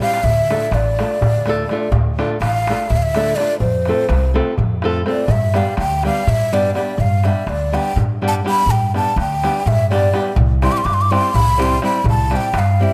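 Balkan folk in a festive, exuberant wedding-band spirit, this 7/8 passage, cut from a longer piece, opens with a darbuka fill. A breathy, up-front ney carries the solo melody with vibrato and a soft attack. It rides over dark fingerpicked flamenco guitar, a woody, thumpy pizzicato upright bass on gut strings, and a crisp metal-shell darbuka played with soft hands and set at a distance, all in a moderate recital-hall reverb captured by close, detailed microphones.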